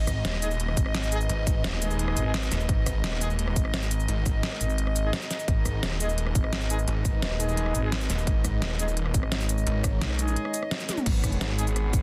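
Dark technical drum and bass with an aggressive mood, this piece opens straight into a drop. A snarling, distorted saw bass and a thick FM bass growl up front over a punchy electronic kick and a dubstep drum kit with a deep snare and crisp hats. Sidechain pumping moves the saw bass, a mellow ambient pad in the background and a floating, bowed chamber string section, while a brass ensemble with light vibrato adds stabs through a digital delay. A brief break arrives at 10.4 seconds, with a drum fill at 10.9 seconds, all under a dense, heavily limited master.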